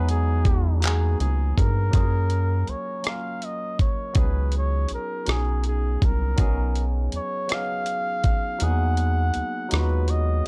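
Sensual and tender, this slow six-eight R&B fragment sets a smooth-topped flugelhorn melody with light vibrato over a barky, lightly overdriven tine electric piano with phaser, a rubbery, hollow square-wave bass, and a dusty sampler-style kit of handclaps, hi-hat, rim click and a thumpy kick, the kick alone falling silent at 8.6 seconds, all on a dry, gritty cassette recording.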